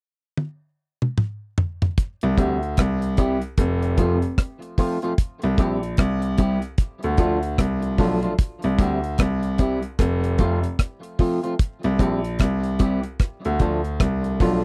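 A laid-back 75 BPM groove in 4/4 with a 16th-note swing opens on a deep, dry reggae drum kit, whose tight kick, hi-hat, rim click and toms roll through a fill from 0.4 seconds, giving this sunny roots reggae excerpt in C mixolydian its start. At 2.2 seconds a clear, boxy grand piano takes the bass role with short-sustained low notes. A slightly broken-up, picked and compressed electric guitar follows at 2.4 seconds with tape echo, moving over C, F and Dm. All three parts sit up front in a close, 1970s-style studio sound with little reverb.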